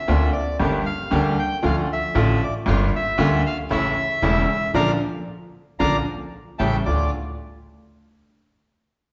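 Melancholic and sultry, this short tango excerpt in D minor moves at 115 BPM in 4/4 with a loose, rubato feel. A reedy bandoneon carries the melody up front with its warm, boxy, small-room tone. A polished, brilliant baby grand piano supplies the accompaniment close to the listener, while a woody, thumpy upright bass with gut strings plays pizzicato underneath. A bowed chamber string ensemble adds earthy stabs from the background. The harmony winds from Bbadd9/D through Gm, Dm and Gm7 to A and Bb, and the whole band hits an accent from 4.7 to 6.9 seconds before A7 resolves to Dm at 6.9 seconds. A recital-hall reverb lends the sound a church-like bloom, and the top end is gently muted.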